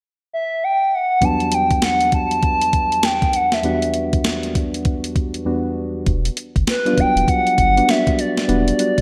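New jack swing R&B at 99 BPM in E minor with swung 16ths and a punchy, slick feel, this excerpt opens on a hollow, woody clarinet-like synth lead with chorus and vibrato, joined at 1.2 s by soft, warbling electric-piano-like keys on an Em9 chord and a clean 12-bit drum machine with thumpy kick, medium-tuned snare and gated reverb, which drops out briefly at 5.5 s before a round, deep analog bass enters at 6.1 s, the whole mix set in a bright 1980s-style plate reverb.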